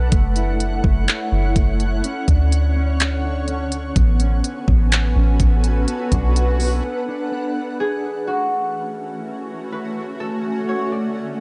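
A dark, intimate production with a dry room opens this short cut from a longer piece of atmospheric cloud-rap, spacious and ethereal in mood and set in a half-time 4/4 feel. A shimmering ambient pad holds sustained chords throughout, its slow-attack, granular tone thickened by chorus, built-in reverb and sidechain pumping, while a soft, round 808-style bass sits up front beneath a smooth, electronic drum kit of knocking kick, handclaps and tape-flavoured hi-hat. A mellow, clean electric guitar plays arpeggios through harmonic tremolo and delay, moving through F#m7, Dmaj7, Amaj9 and Bm7. An electronic swell rises at 4.8 seconds, and the bass and drums drop out near 6.8 seconds for a brief break. From 7.8 seconds a fingerpicked concert harp enters with the melody in a ringing, delayed tone, carried by the pad alone as the chords return to F#m7 and Dmaj7.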